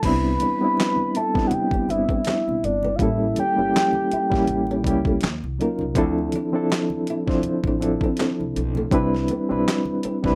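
A soft, octave-layered synth lead carries the melody from the opening moment, round and full-bodied with chorus and vibrato, ringing up front over a reedy electric piano whose fast tremolo colours the chords through its built-in speakers. This is relaxed, warm-hearted R&B with a neo-soul lean at 81 BPM in 4/4, with a gentle swing on the sixteenths and a harmony that moves from Cmaj9 through A7b9, Ebm9 and Dm9 before settling back on Cmaj9. A compressed, pitched-down boom bap drum kit sits up front with a gritty, thumpy kick, medium-tuned snare, hi-hat, handclaps and crash cymbal, while a pizzicato upright bass adds woody gut-string weight underneath. Very quiet, low-tuned congas with a thick-skinned tone fill out the groove, and a small fingerpicked nylon-string guitar enters at 0.4 seconds as a second line tucked into the background. The lead drops out at 4.8 seconds, leaving the mellow keys, bass, guitar, congas and drums to carry this short passage from a longer piece, heard in a rough home-demo mix with light reverb.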